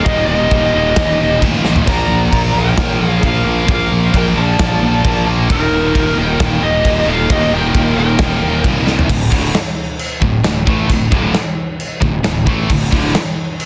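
A punchy, up-front big rock drum kit drives this dark, heavy metal fragment at 133 BPM in 4/4, its medium-tuned snare, bright crash, china and splash cymbals and toms ringing in a big room, with a half-time feel through the first 9.1 seconds and fills at 1.6 and 8.9 seconds. Over it, a warm, high-gain lead guitar carries the melody in D phrygian with tape echo, shadowed by a darker second lead line sitting in the background, both stopping at 8.6 seconds. Beneath them, a stack of picked, distorted rhythm guitars grinds out the riff: a heavy high-gain guitar in the background, a very quiet scooped guitar, and a compressed, double-tracked one that drops out at 9.1 seconds before a brief return. A growly, fuzz-driven fingered bass with overdrive anchors the low end. The harmony moves from Eb to Bb and back before landing on a D5 power chord as the section shifts at 9.1 seconds, all held together by a small-room reverb and a dense, heavily limited modern master.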